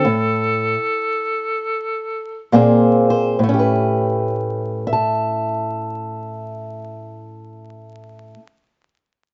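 A swaggering, rollicking slice of acoustic country blues cut from a longer piece, in a swung 4/4 around 68-75 BPM in A mixolydian, easing its tempo in the opening bars over a stop-time feel. A mellow, vintage-toned harmonica leads up front in a jazz style with light vibrato, scooped notes and plate reverb before dropping out at 2.5 seconds. A boxy, fingerpicked ladder-braced acoustic guitar carries on until 8.5 seconds, moving through a Bbsus2 to an A9 at 3.4 seconds, all in a dark, vinyl-crackled production with light reverb.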